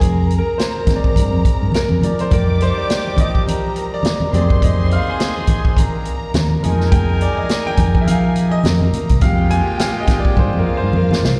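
Cinematic and silky, this short excerpt from a longer 1970s-style soul piece moves at 104 BPM in 4/4 with a 58% swing on the sixteenths, as a clear, intimate baby grand piano solos throughout over a warm, punchy fingered electric bass and an up-front vintage drum kit with a punchy kick and medium-tuned snare, joined by ringing, low-tuned congas sitting in the background with slapback echo. A dark, woody studio string section carries a lush bowed second line with vibrato and slapback echo, while a distant, roomy horn section adds jazz-style stabs from 2.3 s, and a drum fill arrives at 10.4 s. The harmony drifts from Bb7sus4/F through Ebmaj7/F, Abmaj9 and Fm7 before returning to Bb7sus4/F, all heard as a live gig through the venue's PA with recital hall reverb.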